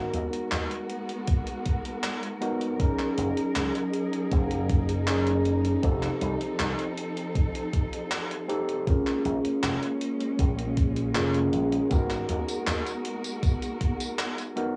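A gritty, overdriven tine electric piano, played through a combo amp and touched with subtle chorus, tape echo and cassette grain, sits up front in this hazy, melancholic vaporwave piece at 79 BPM in G# dorian. Beneath it, a dark studio string section holds lush, bowed chords with expressive vibrato and a smooth top, while a bright, punchy slap bass run through an envelope filter carries the low end until 12.8 seconds. A gated 80s digital drum machine supplies handclaps, hi-hat and tambourine, and a thumpy, sampler-style electronic kick drum joins up front at 1.3 seconds, both with a tape-warm character from being re-recorded in a small room. The harmony drifts through G#m9, F#69, F7 and A#m7 before returning to G#m9 in a steady, straight 4/4. Light reverb and the small-room ambience of a home cassette recording wrap this brief cut from a longer piece, which runs about 14.8 seconds.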